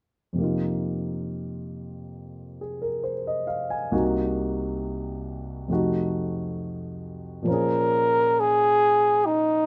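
Set in light reverb, this short excerpt of a wistful, intimate jazz ballad at 68 BPM with a gentle swing opens on a warm, up-front grand piano comping through suspended and altered chords, until a dark, breathy trumpet with a whispered, soft-attack tone and vibrato enters close-miked at 7.5 seconds to carry a brief melody over a Bbm9 chord.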